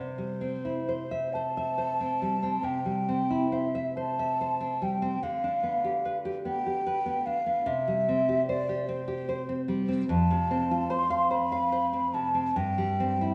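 An airy, hollow concert flute sings the melody with gentle vibrato and soft attacks, sitting up front in this serene, romantic duo cut from a longer piece. A fingerpicked nylon-string guitar accompanies it throughout, its deep classical tone marked by finger squeak. The unhurried, rubato 12/8 flow drifts through a simple harmonic sequence that returns home, all bathed in a wet recital hall reverb.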